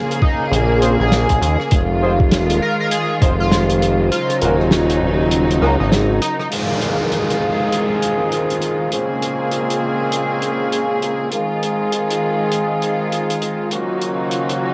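A swung sixteenth-note groove in 4/4 drives this swaggering, gritty glitch hop cut, built on an acoustic soul kit of rim clicks, snare, hi-hat and dark crashes, joined briefly by a thumpy, pitched-down electronic kick that drops away after 3.4 s. A distorted sawtooth synth bass with tube saturation sits up front beneath a tearing, bright sync lead carrying the melody through lush chorus, cassette tape wobble and analog delay, both parts dropping out by about 6.5 s. Throughout, a rich, distant-sounding symphonic string section holds sustained minor-seventh chords with sidechain pumping, while a mellow horn section punches out octave-doubled stabs that also pump and echo through analog delay. A very quiet, cloudy granular pad blurs and evolves high overhead, and in the second half an electronic downlifter sweeps through the texture. Light reverb and studio ambience give the home cassette recording a lo-fi, intimate feel.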